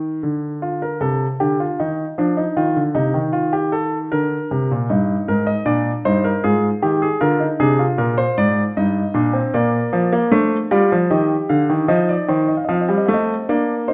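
A polished concert grand piano with deep bass and an up-front, present tone carries this lively yet stately baroque-style three-part fugue alone, ranging from G2 to F5 in E-flat major. At 77 BPM in a straight 3/4, the harmony moves through chords such as Ebsus2, F7, Ab5 and Bb7 before reaching Eb at 11.1 seconds and closing on F7 at 11.9 seconds, as the passage breaks off from a longer piece. Close, detailed microphones capture the piano in a moderate recital-hall reverb, tuned to A4 = 443 Hz.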